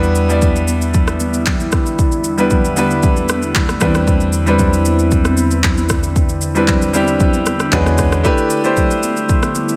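A clear, open concert grand piano sits up front in this soulful, deep amapiano excerpt, carried by a layered deep house kit with a deep kick, handclaps, rim click and shaker, a punchy, funky analog bass pluck that drops out at 8.2 seconds, a glassy, ethereal FM pad entering at 0.8 seconds with ensemble chorus and sidechain pumping, and bright, high-tuned congas kept very quiet beneath a light reverb.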